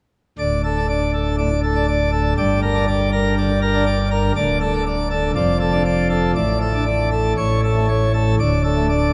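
A brilliant, full pipe organ plenum with bright mixtures, baroque voicing and audible chiff rings out up front from 0.4 seconds in this majestic, dramatic classical organ toccata excerpt in D minor at 120 BPM in a straight 4/4, spanning D1 to D5 alone through harmonies that pass from D to G minor and on to A before settling back on D by 8.4 seconds, all bathed in a wet cathedral reverb with a 5.2-second decay.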